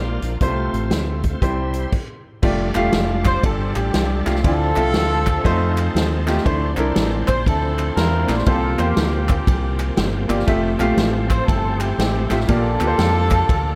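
A swinging 4/4 pulse at 119 BPM drives this jubilant, uplifting uptempo gospel excerpt in F major, where a brilliant grand piano, a shouting tonewheel organ with slow rotary speaker and chorus vibrato in the background, a round, dark fingered electric bass and a big-room drum kit with punchy kick and ride cymbal open the groove, a brief stop at 1.9 seconds gives way to crisp group handclaps at 2.7 seconds, and a smooth jazz-style horn section carries the melody with tape echo from 3.3 seconds over rich chords like Bbmaj9#11 and C7sus4 in light reverb.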